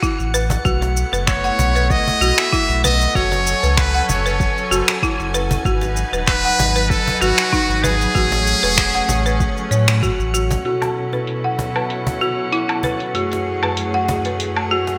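A buzzy, close-miked trumpet with a metal mute carries a jazz-style melody with scooped notes and digital delay until 10.0 s in this mystical organic downtempo piece at 96 BPM. It rides over dry, hard-mallet folk marimba arpeggios, an overdriven deep house kit of finger snaps, hi-hat, shaker and woodblock with gated reverb, a deep overdriven electronic kick and a woody cajon. Beneath them sit a round sine sub bass and biting studio strings, both pumping to the sidechain, with a glassy texture of drifting harmonics in the background. A mellow tine electric piano enters at 10.6 s as filter sweeps move over the drums and marimba, all within a lush hall reverb and bright 1980s-style digital production.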